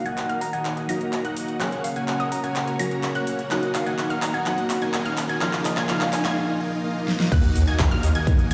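A round, gentle struck synth lead, a baby grand piano and a warbling vintage unison pad open this anthemic, euphoric festival progressive house excerpt at 126 BPM in Eb minor, with the pad and piano pumping under sidechain, and are soon joined by a background pluck arpeggio under a filter sweep, a huge, airy supersaw riff and a big-room kit of metallic hats, handclaps, crash and an enormous snare filling through the build-up over a very quiet riser, before a break at 6.4 seconds and a drop at 7.3 seconds bring in a punchy, up-front kick and a thick, saturated detuned saw bass, the whole mix bathed in a lush digital hall reverb.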